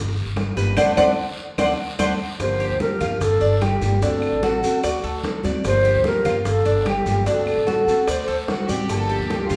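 Cuban son in the guajira style at 148 BPM in G minor, this nostalgic fragment opens on a bright, metallic Cuban tres solo with its double strings over a woody, growly pizzicato upright bass and fingerpicked classical nylon-string guitar, while thin-skinned congas, tight high-tuned bongos, dry claves and a raspy guiro sit in the background alongside grainy maracas, all in a live room with a large, wet reverb; an airy alto flute with vibrato and an unsteady, crisp attack takes the melody up front from 2.4 seconds, and a dark, reedy, bowed violin section with a gut-string tone adds a second line from 8.5 seconds as the harmony rocks between Gm7 and D7.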